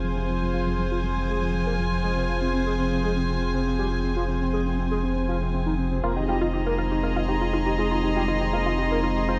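A round, deep analog bass sits up front on a low F throughout this dark, driving techno excerpt at 120 BPM in F minor. Above it, a warbling vintage pad with chorus holds slow-attack chords, while a nasal, gut-string chamber section adds bowed texture. In the background, a fat, detuned sawtooth lead carries the melody through a filter sweep, lush chorus and digital delay; at 6.0 seconds, as the harmony moves from Fm to Ab/F, a tight sequenced synth joins with arpeggios colored by chorus, phaser and delay, all framed by light digital ambience in a bright 1980s-style production.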